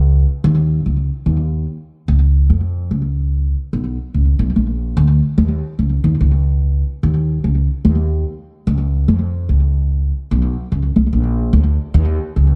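Serious and meditative, this reggae fragment features a lone upright bass played pizzicato, its woody, thumpy tone sitting up front in the mix, carrying a slapback echo. The low register and dark, steel-strung sound give the 4/4 groove, with its lightly swung sixteenths, a grounded weight. The dry, close recording has the intimate feel of a 1970s studio.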